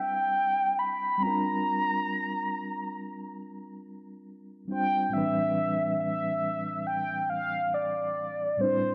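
R&B at a slow 69 BPM in 4/4, with a light swing on the sixteenths, this short cut from a longer piece feels sensual and soulful. A horn-like synth lead carries the melody from start to finish, its round, wave-folded tone softened by a gentle attack, sustained notes, vibrato, chorus and an analog delay. Beneath it, a reedy electric piano plays the accompaniment throughout, clean and mellow, pulsing with a fast tremolo and sounding as if heard through its built-in speakers. Both parts sit up front, while the chords move from Cmaj9 to Bb69 at 1.2 seconds and settle on Am11 at 5.1 seconds. A church reverb with a long tail drenches the mix, giving the whole passage a dreamy, hazy glow.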